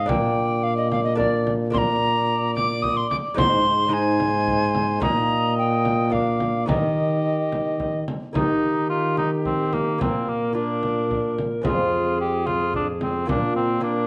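A courtly, festive renaissance-style consort dance in Eb major at 109 BPM in 3/4 opens with an airy alto recorder carrying the melody up front with vibrato and a soft, chiffy attack, alongside a warm, lightly vibrato cor anglais on the second line, a mellow trombone with a smooth top on the bass, and a delicate fingerpicked lute with gut double strings in the background. A deep, large, band-limited frame drum enters at 0.1 seconds, and the harmony moves through Bb, Ab and Eb before a second section from 8.4 seconds passes through Fm and settles on Bb. Close, detailed microphones catch the woody recorder and the other parts within a moderate recital hall reverb, and the excerpt is cut from a longer piece.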